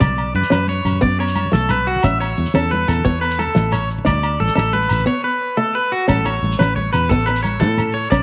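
A joyful, danceable highlife guitar band groove in 12/8 at 118 BPM in A major opens with all seven parts together: an up-front, twangy electric guitar at the edge of break-up plays arpeggios through tape echo over a fingerpicked acoustic archtop guitar with fresh strings and audible finger squeak. A round, foam-muted fingered electric bass and a dry, damped 70s drum kit with a fat snare, tight kick and rolled-off top carry the groove. Ringing agogo bells and grainy shekere sit in the background, and soft-handed, high-tuned congas play very quietly up close. Light reverb and small room ambience surround this short cut from a longer piece, which moves through Bmadd9, Aadd9 and D5 before returning to Aadd9 at 6.1 seconds.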